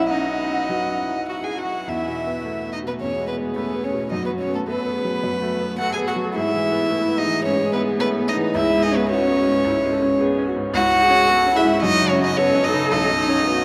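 Up front, a rich, pure violin carries the melody with a soft attack and sul tasto bowing over a distant, floating cello second line, a dark, nasal viola with vibrato and a brilliant, short-sustained baby grand piano in this cheerful, lively classical-period piano quartet movement in E major at 108 BPM with rubato, cut from a longer piece and bathed in the long, echoing reverb of a vast cathedral.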